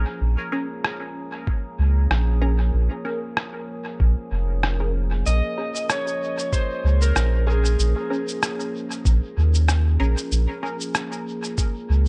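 Ambient dub in Bb minor at 95 BPM with a gentle 16th-note swing, this hazy, meditative clip from a longer piece rests on a single Bbm7 chord, with a moody sawtooth pad drifting in chorus and reverb, muted detuned chord stabs filtered through phaser and dub echo, and a round, soft sub bass sitting up front, while a muffled, pitched-down rim click and cabasa enter at 0.8 seconds and a compressed, thumpy kick joins at 1.5 seconds, before a slightly broken-up electric slide guitar sings a brief melody from 5.3 seconds, trailing dub echo through an echo-heavy digital ambience.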